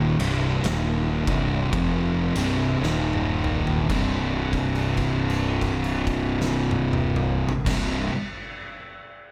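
Stoner and doom metal with a heavy, brooding mood and a lazy swing, this fragment is cut from a longer piece. An up-front fuzz guitar with a warm, picked tone carries the riff, doubled by a darker, thicker fuzz guitar sitting in the background, while a round, punchy fingered bass adds overdrive and tube saturation underneath. An oversized, low-tuned acoustic kit with a fat snare, gritty saturation and dark cymbals thunders through a bright stone room that pumps around the hits. The drums roll through a fill from 2.8 to 3.9 seconds as the harmony moves from C minor to an Eb power chord. At 3.9 seconds the band settles onto a C power chord and lets a long held note ring out. A light, small-room reverb wraps the whole sound.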